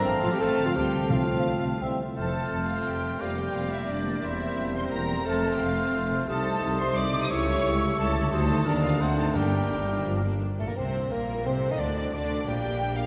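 Heard through a wet concert hall with a long reverb tail, this fast, dramatic romantic orchestral fragment in 3/4 at 175 BPM moves with restless urgency, turning from F major to G minor at 6.3 seconds. An intense, lush violin section carries the melody while a bright second violin section, a mellow clarinet, a hollow silver flute and a soft-attacked cor anglais weave second lines; a very quiet, rich viola section, a bassoon, a fingerpicked ringing harp and a dark, tight French horn section fill in beneath. Cellos and smooth, even double basses anchor the bass, and round, close timpani strokes mark brief moments at 1.1 and 9.3 seconds, with the flute, cor anglais and horns falling away near 10.4 seconds.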